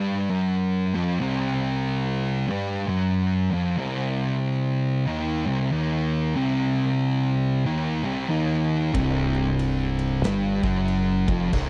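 Stoner and doom metal with a heavy, hypnotic mood, this short cut from a longer piece rides a loping swung eighth-note feel in 4/4. Two thick fuzz guitars open the recording at 0.0 seconds, sitting up front and picking a low, distorted riff over a C minor chord, one with a warm tone and the other darker. At 8.9 seconds a growling fingered electric bass joins in the deep low register, its overdriven sound round and punchy. A big acoustic rock kit enters at the same moment, with crash cymbal, a punchy kick and a medium-tuned snare heard in a studio room. The sound is dry and close in a 1970s studio style, and the piece cuts off at 11.7 seconds.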